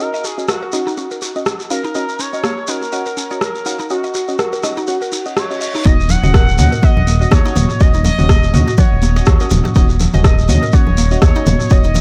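Opening on a gliding, chorused sawtooth lead with vibrato, soft evolving chord stabs pumping against the beat, a grainy vintage shekere and a woody FM mallet pluck through phaser, all soaked in dub echo, this driving, hypnotic afro house excerpt in Eb minor at 123 BPM with a swung sixteenth feel brings in an overdriven deep house kit at 0.5 s, then after a faint reverse cymbal drops at 5.9 s into a deep up-front overdriven kick, a smooth tube-saturated bass and bright high-tuned congas, all over an Ebm7 in a light-reverb, echo-heavy mix.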